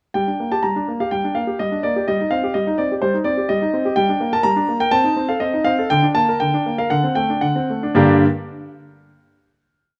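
Elegant yet restless, this short classical-period piano sonatina in G minor moves at 110 to 129 BPM in 4/4, shaped with a flexible, rubato feel. A solo grand piano carries the whole piece, its tone smooth and vintage, sitting up front in the sound with a warm character. A single-line melody runs above a broken-chord bass, spanning from G2 to Bb5. The harmony travels from G minor through C minor over G, a diminished chord and a D minor add11 to D7 before settling back on G minor, with the final chord section running from 8.0 to 10.0 seconds. Close, detailed miking captures the instrument intimately, set in light reverb.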